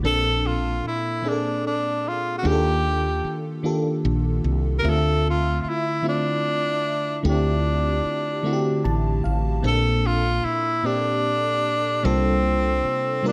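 Slow six-eight R&B with a sultry, late-night mood, where a breathy, whispered tenor saxophone with slapback echo carries the melody over a lush, dreamy FM electric piano with a soft pad layer and chorus that adds a brief fill at 8.4 seconds, and a woody, round fretless electric bass, all in light studio reverb through a short cut from a longer piece moving from Bbmaj9 through Ebmaj9#11 and Dm9 to a closing C13sus4.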